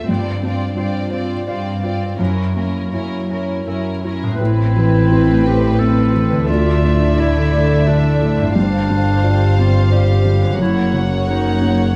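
A felt-muted upright piano, soft and mellow with thick felt and audible action noise, carries the accompaniment of this sorrowful, bittersweet cinematic film score in A minor at 87 BPM in a rubato 3/4. Above it, a rich violin section sings the melody with light vibrato and sul tasto bowing, while a darker violin section with a smooth top shapes a second line beneath it. A pure, floating viola section fills the middle, a concert harp rings out arpeggios in the background, and a chamber cello section holds the bass from 0.1 seconds. At 4.4 seconds the music moves into a new section as a clear, classical-style clarinet enters with its own second line and a double bass section deepens the low end. The harmony drifts from G7sus4 and F#7 through Amadd9 and Dmadd9, returns to G7sus4, and then settles on F#. Close, detailed microphones, light reverb and a layer of vinyl crackle give this excerpt an intimate sound.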